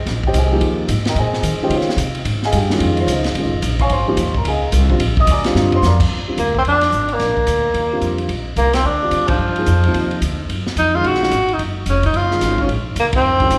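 A moderate scoring-stage reverb with a 1.6-second tail gives this short cut from a longer modal jazz piece the sound of a church or concert hall, and its mood is open and hypnotic. At 219 BPM in 4/4 with a light swing on the eighths, a thumpy, woody pizzicato upright bass on gut strings starts things off, joined almost at once by a vintage drum kit with dark cymbals, a tight kick, a medium-tuned snare and a rolled-off top, working across ride, hi-hat, crash and toms. A dark, mellow upright piano with long sustain supplies the accompaniment over chords moving from Abmaj9 to Dbmaj9 and Bb7. A drum fill at 5.6 seconds leads into a new section, where a tenor saxophone enters at 6.4 seconds to take the solo melody, up front yet roomy, with vibrato and scooped notes over Ebmaj9 and then Gbmaj9. The full band hits accents at 9.3 and 13.1 seconds before the cut ends.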